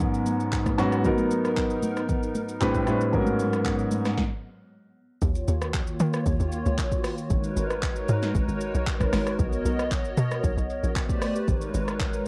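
Soulful and deep, this amapiano excerpt opens with a warm grand piano playing minor-eleventh and major-seventh chords over a hollow, flute-like pad that pumps against an overdriven deep house kit of deep kick, punchy snare, handclaps, hi-hat, rim click and shaker, with bright, damped congas tucked in the background. The congas drop out at 4.0 seconds and the piano follows at 4.2 seconds for a brief stop, and at 5.2 seconds the drop arrives with a tight, percussive log drum bass carrying the groove beneath the sustained pad and drums. A cassette-tape haze and light reverb give the whole home-recorded sound a vintage, lo-fi character.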